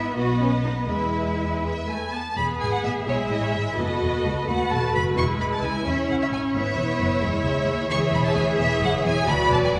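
Up front sits an intense, rich viola section carrying the accompaniment in a spirited, lively classical-period movement for string orchestra in E major, moving in a rubato 6/8 at 80-89 BPM. Above it, the focused first violins sing the melody with vibrato while the smooth-topped second violins hold a second line, and the soft-attacked cellos in the background join woody double basses on the bass. Heard in a church or concert hall with wet recital-hall reverb, this excerpt shifts into a new section at 2.4 s, its harmony moving through B7 and C#m before touching Bm at 9.3 s.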